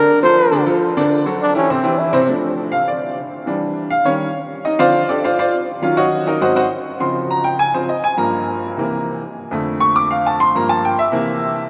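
Bathed in the long wash of a vast, echoing cathedral space, this lively, sophisticated jazz fragment opens with a close-miked trombone in a straight mute carrying the melody, nasal and up front with light vibrato and a soft attack, until 2.2 seconds. A brilliant, woody upright piano accompanies from the start with long sustain and then takes over as the solo voice from 2.3 seconds, moving through rich changes such as Ebm7 to Ab7 to Dbmaj7 before settling back on F6 and a closing Gm7 to C7.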